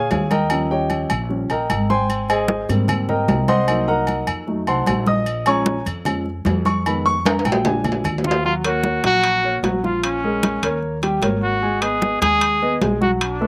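A dry, close, outdoor-sounding excerpt of driving, sophisticated Afro-Cuban jazz in Eb minor at 151 BPM, where a dark, mellow grand piano with slapback echo and audible action noise solos up front over woody pizzicato upright bass, ringing congas and metal-shelled timbales with agogo bells until a drum fill at 7.2 seconds, then a warm, vintage trumpet with light vibrato and scooped notes enters at 8.3 seconds over chords moving from Ebm9 through Bbm7 and Eb7 to Abm7.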